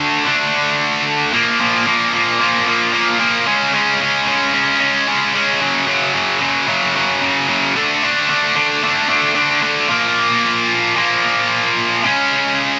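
Bittersweet and cathartic, this 12.8-second rock excerpt at 112 BPM in a straight 4/4 features a single heavy high-gain electric guitar, bright, distorted, picked and double-tracked, sitting up front and spanning Gb2 to D4. It moves through the power chords D5, Bb5, Db5 and Gb5, leaving the opening D5 at 1.3 seconds and returning to Bb5 at 9.9 seconds. The sound carries a moderate small-room ambience, like a band playing live together, with its top end rolled off above 7.8 kHz.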